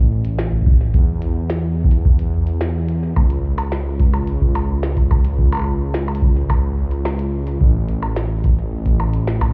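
IDM with a glitchy, intricate mood, this short cut from a longer piece opens on a dark, detuned sawtooth bass that rumbles up front with a saturated, beating tone. A glitchy kit of tiny snare, clicky hats and percussion blips joins at 0.2 seconds, overdriven and treated with delay, before a deep, tape-warm analog kick arrives at 0.5 seconds and sits louder than the kit. The whole mix sounds muffled, as if heard through a club wall, with little reverb on the parts themselves.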